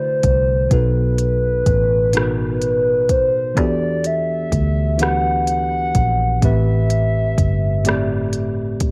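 A hollow, woody synth lead with a clarinet-like voice carries the melody up front, its sustained notes shaded by vibrato and colored with chorus, phaser and a slapback echo. This short excerpt of slow R&B in a straight six-eight feels sultry and yearning. A worn, slightly out-of-tune tine electric piano supplies mellow, clean accompaniment through chords moving from D9 and B7 to Em11 and Am9. Underneath, a vintage foam-muted fingered electric bass sits dark, round and punchy. An electronic R&B drum kit enters at 0.2 s with a soft kick, crisp hi-hats and rim clicks placed up front, while a moderate spring reverb lends the whole mix a gentle sense of space.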